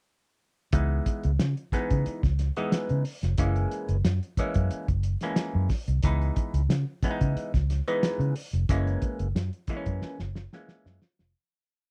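At 0.7 seconds a muffled, cloth-damped drum kit with a fat snare and tight kick, a dark, foam-muted fingered electric bass and a stringy, overdriven clav through a phaser start together on a cool, driving 90 BPM funk groove in C# dorian, with the drums playing a syncopated pattern with ghost notes, the bass a syncopated riff anchored on the downbeat with chromatic approach notes, and the clav rootless chord stabs with grace notes over C#m9 and F#9, in a dry, close 1970s-style studio sound that fades out from 8.7 seconds beneath a drum fill at 10.0 seconds.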